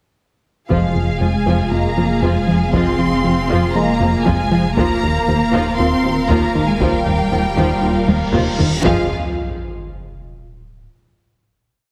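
A punchy, sawtooth-edged analog bass drives this relentless, vast hybrid orchestral and electronic film cue with a pulsing ostinato from 0.7 s until 8.7 s, sitting forward of everything else. Around it, in F minor at 118 BPM in a straight 4/4, a lush symphonic violin section carries the bowed melody with soft-attacked vibrato, while a second violin section holds rich sustained chords beneath it and the violas add a driving rhythmic ostinato. Rich cellos double the tune at the octave, a very quiet double bass section plays a driving bass ostinato, and a thick, saturated sub bass holds a deep low drone, with a mellow, vintage-toned French horn section placing short accented and sustained chords in the background. A close, dry taiko ensemble beats a big, very quiet drum ostinato with heavy sticks, and the harmony moves from Fm to Ebadd9 at 4.8 s. At 8.0 s a reverse cymbal begins swelling toward the impact, a drum fill enters at 8.1 s, and at 8.8 s an electronic sub drop lands as a low impact on the final chord. 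The moderate scoring-stage reverb gives the strings space, while heavy multiband compression lends the whole mix a dense, radio-like loudness.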